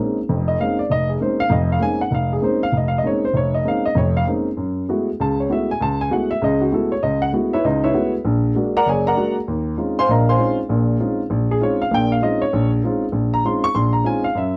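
A dark production places a baby grand piano up front in a moderate club reverb, close enough that the clatter of its action can be heard beneath the notes. The instrument itself sounds warm, intimate and natural, its long sustain letting chords ring into the room. This is solo jazz piano at a brisk swinging pace, intense and spiritual in mood, cut from a longer performance. The playing ranges from deep bass down at F1 to bright upper notes reaching Db6, moving through dense harmonies from Bbm11 to Gbm11 and an altered Bb7 before a new phrase begins at 9.5 s on a suspended Eb13 chord. The piano carries the whole fragment alone from 0.0 to 14.6 s, giving it the feel of a searching, late-night club set.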